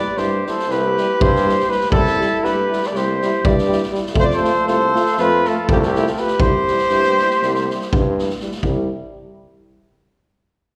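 Heard in the moderate reverb of a church or concert hall, this virtuosic, wild Balkan brass band passage in 9/8 is cut from a longer piece and moves from C to F and back to C. A soft-attacked, mellow cornet sits up front with the melody while a distant, roomy flugelhorn carries a second line, and a clear euphonium and close-miked trombone hold the accompaniment in the background, each of these four horns played in a classical style with light vibrato. A vintage-toned tuba takes the bass and a street-band drum kit, boomy in the kick with a rolled-off top, enters at 0.2 s, while the cornet and flugelhorn drop out at 8.2 s.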